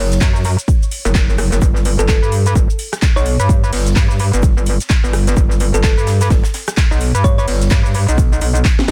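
A dry, dense and heavily limited mix opens this aggressive, bouncy bass house excerpt at 128 BPM with swung 16ths, where a saturated metallic FM wobble bass with chorus, overdrive and sidechain pumping sits up front beside a punchy, tape-warm electronic kick, a layered house kit of cracking snare, metallic hats, handclaps, rim click and shaker, and a very quiet, airy acoustic funk kit with a high-tuned snare, while from 2.0 to 7.4 seconds a round, tine-like thumb-piano-like pluck with chorus and dub echo floats mellow in the background as the harmony settles on G at 1.6 seconds.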